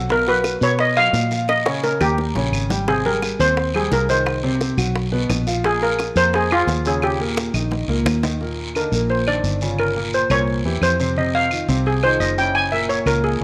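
A bright, shimmering steel pan played with hard rubber sticks sits up front, carrying the melody over a lively, sunny Afro-Cuban jazz groove at 174 BPM in a straight 4/4, and it takes a solo from 8.4 s, when the music settles into Eb major. Beneath it, an intimate concert grand with audible action noise and deep bass comps through chords such as Bbm, Eb7 and Abmaj7, while a foam-muted fingered electric bass holds the low end and tight, high-tuned bongos add fills before dropping out at 8.3 s. A raspy guiro rasps in a small-room space while woody claves tick along in the background, and a moderate echo-chamber reverb gives this excerpt from a longer piece its roomy glow.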